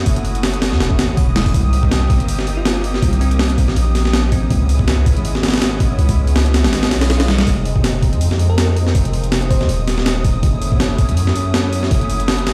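An overdriven, sampler-style breakbeat kit sits up front with a thumpy kick, medium-tuned snare and hi-hat, driving this raw, nostalgic drum and bass cut at 162 BPM with a light 16th-note swing. Beneath it a deep, sine-toned 808-style bass holds long notes while a lush, nasal unison pad with chorus and 12-bit sampler grit sustains chords moving from Gbm7 through Cm7, Dbm7 and Fm7, and a breathy, wind-like tuned noise hangs dark in the background. A sparkling, bell-like FM electric piano with dub echo surfaces briefly at 2.6 and 8.5 seconds, and a very quiet electronic swell passes around 6.9 seconds, all set in a bare room with large studio reverb.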